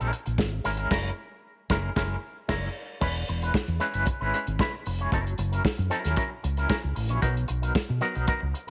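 Driving and glamorous, this disco excerpt at 114 BPM sets a bright, twangy envelope-filtered electric guitar with tremolo over a round, punchy fingered electric bass and a muffled, lo-fi soul drum kit with dark cymbals and a tight kick, all three up front in a small room with light reverb, as the band hits accents from 0.9 to 3.0 seconds and the chords move from F#9 through E6 and F#7 to Bmaj7.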